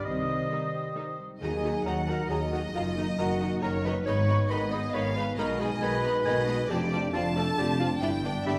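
In a straight three-beat lilt, this mischievous, whimsical film cue, cut from a longer piece, gives the melody to a bowed chamber violin section with vibrato from 0.5 s, while a second violin line, a clear close-miked oboe, a dark solo clarinet and a pure-toned large flute ensemble weave supporting second lines around it. Underneath, a distant bassoon and a very quiet, lush viola section fill out the accompaniment, a French horn section holds sustained chords, and a mellow concert harp rings out arpeggios, while expressive cellos with portamento and a soft-attacked double bass section carry the bass from 0.1 s. The ensemble sits in a scoring-stage reverb that lends its quirky chord changes a cinematic sheen.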